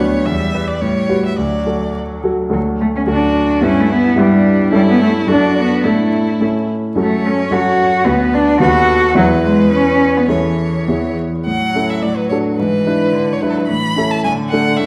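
Graceful and spirited, this quick classical-period movement for piano trio moves at 108 BPM in 2/4 with a rubato feel, starting in D major and turning to A major at 7.0 s. A single bowed violin carries the melody with a rich, focused tone and vibrato, sitting a little lower in the balance than its partners. The bowed cello supplies a smooth, even second line with its own vibrato, placed up front. The concert grand piano gives a clear, vintage-tinged accompaniment with deep bass, also close and prominent. All three play throughout this short excerpt, which sits in a wet recital hall reverb over a layer of vinyl crackle, and the opening material returns at 11.5 s after a contrasting middle passage.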